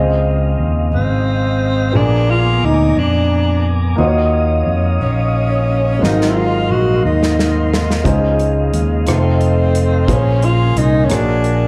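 This short excerpt of slow gospel in 6/8 opens with a grand piano, a mellow tonewheel organ and a fingered electric bass together, settling into a hopeful, jubilant mood at 59 BPM in Db major. The piano is intimate, its action noise audible and its notes sustaining long under a slapback echo, while the organ holds soft, flute-like chords with key click and a slow rotary speaker. The bass sits punchy and up front with an amped tone. At 0.9 seconds a breathy tenor saxophone takes the melody, jazz-styled with soft attacks, scooped notes and vibrato, also carrying a slapback echo. An acoustic country drum kit arrives at 6.0 seconds with a fill of hi-hat, tight kick, rim click and medium-tuned snare, as the rich jazz-gospel harmony moves from Dbmaj9 through Ab13 and closes on Bb7alt. It is heard as a live gig through the venue's PA, with light club reverb and small room ambience.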